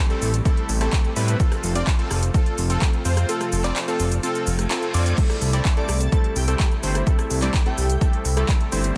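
A punchy, up-front electronic kick drives this euphoric, triumphant slice of festival progressive house, dropping out at 3.3 s and returning at 5.2 s, while a reverse cymbal sounds in the background during that gap. Beneath it sits a fat analog sawtooth bass with a filter pluck, pumping to the sidechain, alongside a big-room dance kit of crisp hats, handclaps, rim clicks, shaker and crash. Above, a detuned supersaw stab riff with tape colour, a filter sweep and delay plays together with a mellow, bold unison lead playing arpeggios in the background and a very quiet lush, chorused pad holding sustained chords. At 5.8 s a soft, dreamy lead enters with its own chorus and delay, over chords moving from Am7 to F to C6.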